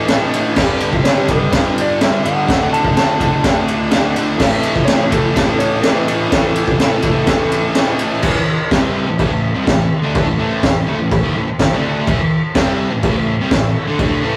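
A rough rehearsal-room sound with light reverb and saturation frames this raw, rowdy garage rock cut from a longer piece, moving over A, G and D chords in a straight 4/4. Up front sit a thick, double-tracked fuzz guitar riff and a gritty garage kit with a boomy kick and high-tuned snare, while a faint, buzzy combo organ holds sustained chords with light vibrato beneath. A bright, slightly broken-up slide guitar carries the melody from 1.0 to 7.7 seconds, and the tune shifts into a new section at 8.2 seconds.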